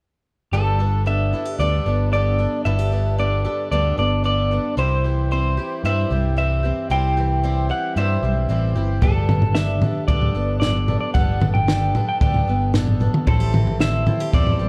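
A slightly broken-up, lo-fi electric guitar through a small old amp carries the melody with tremolo from 0.5 s. Beneath it sit a full-bodied fingerpicked steel-string acoustic, a boxy, shimmering octave-doubled twelve-string with audible finger squeak, and an amped, up-front picked electric bass, moving from Gadd9 to C. This warm, uplifting indie folk excerpt builds at 9.0 s when a compact cocktail drum kit arrives with a punchy kick, high-tuned snare, toms and a rolled-off top, as the chords return to Gadd9 and then Am7, all set in a dark small-room production.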